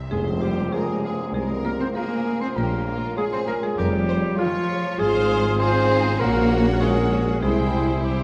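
A playful, whimsical cinematic film cue in F minor at 99 BPM in a straight 4/4, this short section cut from a longer piece has a quirky, sneaky mood. The melody sits with a woody marimba played with hard mallets and a smooth, even violin section with vibrato, while a lush, expressive second violin section, a mellow cor anglais and a very quiet, distant clarinet add second lines. A ringing, fingerpicked concert harp spins arpeggios in the background, and a mellow French horn section holds sustained chords. The low end is carried by a close, focused cello section, a bowed double bass section and a roomy tuba, with a lush viola section joining on accompaniment at 0.7 seconds. A full-band accent opens the cue, where a bright tam-tam sounds until 2.5 seconds, and the harmony moves from Fm through Bbm7 and Fm/Ab to Gb/Bb before landing on C. The dark production sits in a wet scoring-stage reverb that gives the ensemble a deep, spacious sheen.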